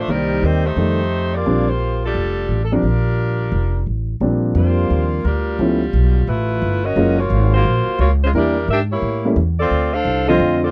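Swinging and brassy, this short big band swing passage is cut from a longer piece and puts a dark saxophone section up front on the melody, its ensemble tone carrying a light vibrato. A woody, thumpy plucked upright bass and an intimate grand piano with audible action noise and long sustain support it throughout, while the harmony turns toward altered and more distant chords from 5.6 s. The sound is dry and close, in the manner of a 1970s studio recording.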